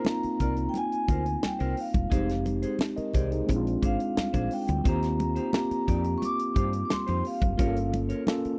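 A dry, close 1970s-style studio sound with small room ambience frames this silky, cinematic slice of lush soul at 88 BPM, where a ringing vibraphone with soft mallets and motor vibrato carries the melody over a mellow tine electric piano, a twangy, slightly broken-up guitar riff bathed in spring reverb, thick-skinned congas set in the background, a tight funk kit with a high-tuned snare up front, and a round, hollow-bodied fretless bass, moving through Ab69, Fm7, Bb9, Eb6 and Gm7b5 before a brief electric piano fill at 8.3 seconds.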